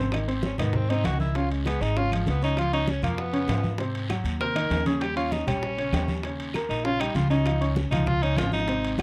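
A clear, vintage-toned tenor saxophone solos up front with vibrato and scooped notes from 0.5 s in this danceable, sophisticated Afro-Cuban jazz excerpt at 196 BPM, over a dark, woody pizzicato upright bass and a natural-sounding baby grand piano moving through Ab, Db7, Ab9, Eb7 and Dbadd9, while background congas, round low-tuned bongos, ringing timbales, claves and a raspy guiro fill out a dry, close 1970s-style studio sound with light reverb.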